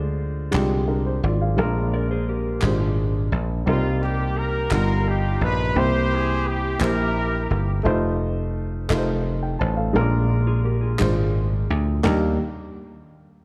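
Slow gospel in 6/8 at 57 BPM in Eb major, jubilant yet reverent, built on a dark, short-sustained grand piano and a punchy, foam-muted thumbed slap bass up front, with crisp group handclaps from 0.5 s, a mellow, compressed electric guitar adding a second line in brief spots, and a forceful close-miked trumpet together with a distant, tight horn section on the melody from 3.7 s, the whole warm production bathed in moderate concert hall reverb as the chords arrive on Ebmaj7 at 12.0 s in this cut from a longer piece.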